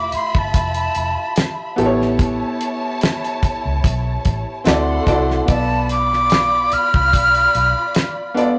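A lightly swung sixteenth-note groove at 73 BPM in 4/4 drives this short cut from a lush, cinematic 1970s-style soul piece. A damped drum kit puts its fat snare and tight kick up front, and a round, punchy, foam-muted fingered electric bass plays underneath until 7.7 s. Above them, a breathy, bright jazz flute with vibrato and a reedy chiff carries the melody, a bowed studio string section adds an expressive second line with portamento, and a clear concert grand piano with deep bass plays accompaniment over Fmaj7, A7, D7 and Bm7b5, all captured in a rough rehearsal-room recording with tube saturation and moderate reverb.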